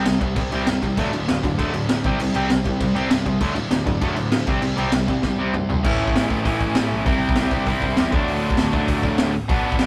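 Energetic and rowdy, this short punk rock cut charges along at 197 BPM in a straight 4/4, centred on D mixolydian. A bright, distorted electric guitar, double-tracked, compressed and up front, drives the riff alongside an overdriven semi-hollow guitar whose hollow-body tone sits further back. Beneath them a dark double bass is bowed by a single player, smooth and even with a touch of vibrato, tucked into the background. The raw garage drum kit brings a punchy kick, a high-tuned snare and dark cymbals, its gritty, saturated sound pumping in a small room. The chords move between C5 and D before a drum fill from 5.2 to 5.8 seconds leads into a new section built on A, C and D, all captured as a rough rehearsal-room recording with light reverb and tube saturation.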